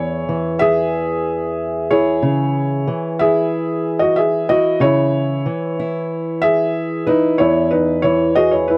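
Tender and nostalgic, this brief excerpt from a longer acoustic folk-pop ballad moves at an unhurried 93 BPM in a straight 4/4. A felt-muted upright piano carries the melody throughout, its soft, mellow tone sitting up front with an intimate closeness. Alongside it, a fingerpicked old ladder-braced acoustic guitar provides the accompaniment, also up front, its dark, woody, boxy sound colored by the character of old strings. The harmony rests on E6, shifts to C#m at 2.2 seconds, and returns to E at 7.4 seconds. The recording has the dry, close feel of a 1970s-style studio, touched with light reverb that lends the pair a quiet, homely glow.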